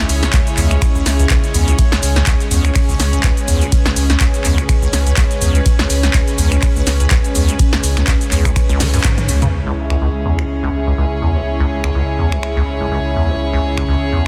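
A squelchy, resonant square-wave acid bass riff drives this raw acid house excerpt in C# minor at 124 BPM, its filter sweeping from 9.5 seconds. Beneath it, a round, dark analog bass holds C#2, while a lush, detuned unison pad and a floating, bowed chamber string section sustain a C# minor chord, all four pumping. A deep, tape-warm electronic kick anchors the swung groove until 9.2 seconds alongside a punchy analog drum machine of snaps, claps, shaker, ride, toms and a softly clipped snare. A very quiet, dark and smooth jazz kit of hi-hat and snare is tucked underneath, and a drum fill with a band accent at 9.0 seconds leads into the second section of a dense, heavily limited mix touched by light reverb.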